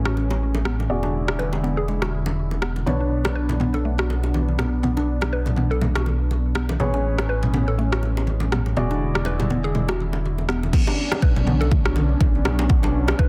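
A smooth, warbling analog pad, soft felt-muted upright piano stabs with audible action noise, and a deep, rumbling detuned saw bass open this earthy, hypnotic afro house passage at 122 BPM in B dorian, joined by a woody, gritty mallet-like synth pluck arpeggio under a filter sweep, a tape-warm afro-pop drum kit, and tight, hard-handed bongos; low-tuned background congas enter at 2.9 seconds, and at 10.7 seconds the piano drops out as a deep, up-front electronic kick arrives for the drop, all set in light digital ambience and a dense, heavily limited master.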